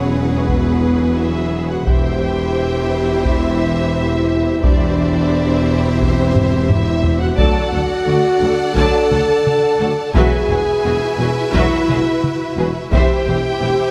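Heroic and majestic, this cinematic orchestral film-score passage, cut from a longer piece, sets a lush, distant violin section on the melody, with a second violin line and bowed violas filling in behind. A tight French horn section and a close, expressive string section hold sustained chords, while a mellow tuba, double basses and cellos anchor the bass. Taiko drums struck with heavy sticks enter at 0.5 seconds, sounding dry and near, and play a fill from 6.4 to 7.4 seconds, inside a moderate concert hall reverb.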